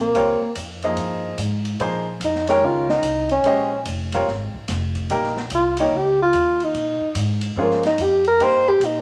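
A moderately reverberant large studio frames this searching, intense modal jazz excerpt in Bb dorian at 146 BPM with a swung 4/4 feel, where a dark, breathy tenor saxophone solos up front with whispered subtone, vibrato and scooped notes over a clear baby grand piano comping on Bbm7 moving to Eb/Bb at 5.1 seconds, a woody pizzicato upright bass, and a quiet open jazz kit with dark cymbals and a boomy kick.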